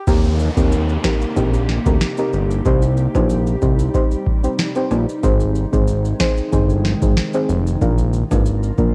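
A straight 4/4 dancehall groove at 93 BPM, sultry and tough, rides on a booming analog drum machine with a deep kick and crisp snare up front beside a fat, detuned sawtooth bass with a filter sweep, while deep, nasal chord stabs with chorus move through Eb6, Cm, Ab and Bb, a glassy, ethereal FM pad enters at 1.0 seconds, soft-handed maracas and timbales sit low in the mix, and a downlifter falls away by 5.2 seconds, all in a dry home cassette recording cut from a longer piece.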